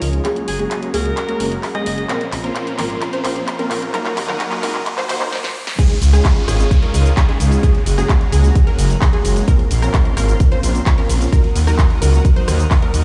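Heard through a big sound system in a bare room and wrapped in large studio reverb, this festival progressive house excerpt sounds triumphant and anthemic. It opens on a build-up where a breathy, whispered alto saxophone sings a brief jazz-style solo line through digital delay until 2.1 seconds, while a boxy baby grand piano accompanies in the background until 5.3 seconds. Beneath them, a lush pad of detuned sawtooth and square waves holds bright, chorused chords roughened by 12-bit sampler grit. A mellow, wave-folded pluck spins arpeggios, and huge supersaw chords carry the riff, with both pluck and supersaw moving through filter sweeps. A house kit with punchy snare, handclaps, bright hats, shaker, rim click and crash drives a fill, while a riser and downlifter hover in the background. After a short stop, the drop lands at 5.8 seconds as an up-front electronic kick joins the thick, saturated detuned saw bass, and the bass, pad, pluck and supersaw pump with sidechain over a cycle of Dbadd9, Gbadd9, Bbmadd9 and Ebm chords.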